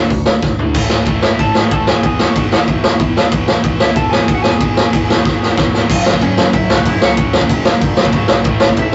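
A raw garage drum kit sits up front in this short, aggressive punk rock excerpt at 187 BPM in F# minor, its small-room sound gritty and mid-forward with a boomy kick, a medium-tuned snare and a rolled-off top, rounded out by crash, ride, hi-hat and toms. A drum fill at 0.4 seconds launches the first section over chords moving from D to A5 and E, and a second fill at 5.3 seconds leads into a new section on F#5 at 5.9 seconds. Behind the kit, a crunchy, double-tracked overdriven guitar drives the riff from the background. A twangy, slightly broken-up lead guitar carries the compressed melody high above. A dark, round hollow-body short-scale bass is very quiet beneath them. The rough rehearsal-room recording has light reverb and warm saturation, and a dulled upper end gives the whole take a raw, straight-ahead punch.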